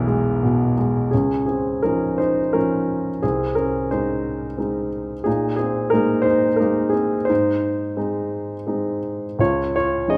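Classical solo piano in a relaxed, sunny mood unfolds a lyrical line in a flexible, rubato triple metre, the grand piano sounding intimate and up front with audible action noise and short sustain, set in a moderate scoring-stage reverb across this brief passage cut from a longer piece.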